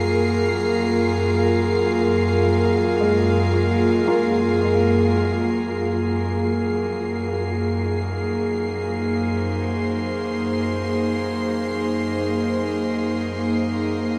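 A breathy, chorus-tinged pad holding sustained chords and a distant, bright violin section high above open this serene, weightless ambient excerpt in free time and Gb Lydian, with a felt-muted upright piano adding mellow, very quiet arpeggios from 3.0 to 6.7 seconds, all soaked in a huge, dreamy reverb.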